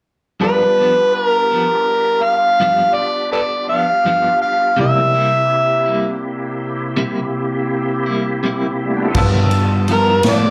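This rollicking, swaggering slow blues, cut from a longer piece, moves at 55 BPM in 12/8 with a straight feel, set in G mixolydian over G7 and C7 before reaching G13. An overdriven, gritty harmonica carries the melody up front with jazz-style tongue slaps and scooped notes, its amplified tone framed by slapback echo. Beneath it, a clean, compressed electric guitar picks out accompaniment through tremolo and slapback echo, while a woody, slightly detuned upright piano adds present accompaniment with long sustain. A reedy tonewheel organ holds sustained chords, colored by chorus vibrato and a slow rotary speaker. Near the end, an acoustic big-band drum kit with a medium-tuned snare and punchy kick enters at 9.1 seconds, and a fat, thick analog bass built on detuned sawtooth tones with a filter sweep joins at 9.2 seconds, as the harmonica moves into a solo. The whole performance sounds like a live gig heard through a club's PA, with light reverb.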